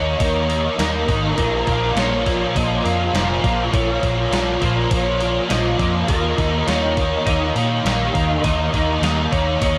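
Shoegaze and dream pop rock with a melancholic, hazy mood, cut from a longer piece and drenched in an enormous ambient reverb that gives the whole mix a dreamy, soaked quality. A fuzz guitar sits up front carrying the riff, its picked, distorted tone thickened by double-tracking, compression and ensemble chorus. Above it, a lead guitar through a small old amp plays the melody in a slightly broken-up, lo-fi voice, colored by vibrato and analog delay. A vintage fingered bass, foam-muted and round, anchors the low end with a dark, punchy sound. Entering at 0.2 seconds, a gated 80s digital drum machine supplies hi-hat, a thumpy kick and a snare wrapped in gated reverb, while the harmony moves from Eb5 to Bbm and back to Eb5 at 6.1 seconds.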